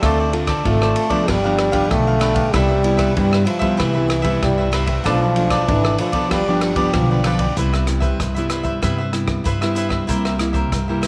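This playful, lively samba-and-choro excerpt opens with the whole band together at 95 BPM in a straight 4/4: a breathy trombone carrying a second line over cavaquinho, nylon-string guitar, upright bass and an open jazz drum kit. The trombone is mellow and jazz-styled, with a soft attack, light vibrato and scooped notes, as the harmony moves through Dm7, G7 and Cmaj7 before a Bm7b5 and G7 turn. The picked cavaquinho sounds bright and crisp, while the fingerpicked classical guitar is warm, its finger squeak audible. The pizzicato upright bass is woody on steel strings, and the drum kit, heard in a small room, offers a boomy kick, dark cymbals on hi-hat and ride, and rim clicks. The trombone stops at 7.6 s, where the music settles into C major on Cmaj7 and later moves to C7, with the guitars, bass and drums playing on until the cut at 11.1 s, and the recording sits in a moderate echo-chamber reverb.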